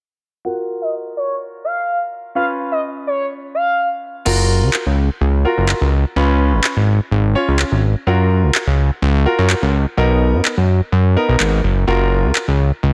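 Carefree and upbeat, this dance-pop excerpt opens with a clear, polished baby grand piano beneath a smooth, warbling portamento lead that carries the melody through chorus and a low-pass filter, while a filter sweep runs through the opening section. The lead drops out at 3.9 seconds, and at 4.3 seconds a fat, detuned analog bass and an electronic, tape-warm R&B drum kit with crash cymbal and handclaps come in, the bass sitting up front as the piano continues. The harmony moves between F#maj7 and C#7 before a Bmaj7 arrives, set in light digital reverb.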